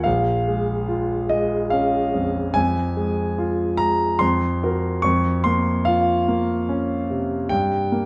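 A clear concert grand piano opens at 0.0 seconds and carries this dreamy, luminous piece of impressionist classical music entirely on its own. The playing moves in a flexible rubato around 72 BPM in 3/4, giving the phrases an unhurried, floating quality. Its harmony drifts from Bbm7 through Fm, a shimmering Gbmaj7#11 over F and Bbmadd9 over F before settling toward Gm near 7.5 seconds. The piano sits up front with a natural tone and a deep bass that reaches down to Bb1, while its upper notes climb as high as Db6. A generous recital hall reverb surrounds the instrument, lending the roughly eight-second passage, cut from a longer work, a lingering glow.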